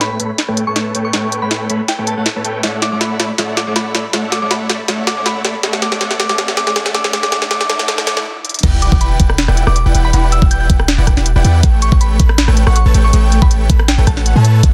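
A glassy synth bell melody and a huge, detuned supersaw riff open this emotional, lush future bass passage at 160 BPM in half-time, with a crisp trap kit building beneath a filter sweep on the supersaw and a background riser until a brief stop gives way at 8.6 seconds to a drop where a deep, boomy 808-style bass, an overdriven knocking kick and an airy, dreamy arpeggiated lead join over chords moving from A9 through Dmaj9/A and Em9, all within a dense, heavily limited master.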